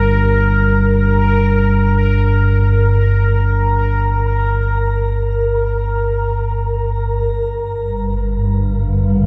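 Floating in free time, this dark ambient drone drifts unmoored from any beat, its mood unsettling and desolate. A deep, ominous sawtooth-and-triangle drone rumbles up front throughout, slow to rise and long to fade, thickened by lush chorus. Above it, a bubbling, detuned texture with resonant, randomly stepping filter moves sits mellow over a minor-seventh harmony, bathed in chorus and shimmer reverb until it falls away at 7.3 seconds. There the harmony shifts to an open power chord, and at 7.7 seconds a granular cloud pad enters, holding blurred, evolving unison chords in the low-middle range. A cavernous cathedral reverb with a 5.9-second tail drenches the whole passage, which is cut from a longer piece.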